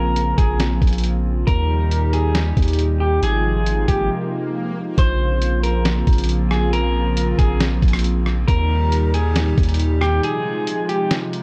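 Spacious and ethereal, this atmospheric cloud-rap excerpt moves at 137 BPM in a half-time 4/4 feel, set in Bb dorian over a Bbmadd9, Eb and Ab6 progression that cycles twice. A hollow, flute-like pad holds sustained chords throughout, soft and full-bodied with subtle chorus and sidechain pumping, while a dark, slightly broken-up electric guitar plays a fingered melody through spring reverb, delay and a low-pass filter. Up front, a deep, mellow 808-style bass sustains long sine notes until 10.2 seconds, beside a lo-fi sampler-style drum kit of hi-hat, thumpy kick, rim click and medium-tuned snare that sounds pitched down, muffled and compressed, with 12-bit grit and a tape-like character from a small room. A faint electronic swell sits in the background from 3.9 to 5.0 seconds, bridging a brief break into the second section. The whole piece sits in a digital ambience that deepens its airy, floating quality.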